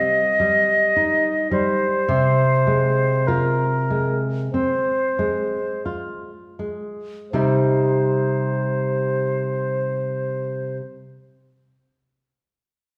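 A pure, straight-toned silver flute carries a melancholic, yearning melody up front, its crisp attack clear above a full-bodied nylon-string guitar that is fingerpicked with a deep classical sound and the odd finger squeak. This romantic duo moves with a free rubato feel, slowing through the opening 7.3 seconds as the harmony shifts from C minor to F minor over C, then settling back on C minor as a new passage begins. A wet recital-hall reverb surrounds both instruments in this short cut from a longer piece.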